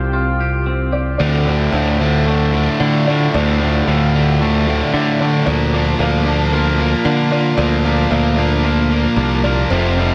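A straight, steady 4/4 pulse carries this cinematic, melancholic post-rock passage, cut from a longer piece. A very quiet, organ-like pad holds sustained chords with a slow attack and a chorused glow. In the background, a dark, intimate felt-muted upright piano and a clean, twangy electric guitar trace arpeggios, both touched with digital delay and the guitar adding spring reverb. A growly, direct picked electric bass sits up front from the start. At 1.2 seconds the harmony moves from Csus4 to Dm, and a bright, overdriven cranked stack guitar riff enters as a build-up runs to the end, with the chord shifting to Bb/D at 5.5 seconds inside light reverb and digital ambience.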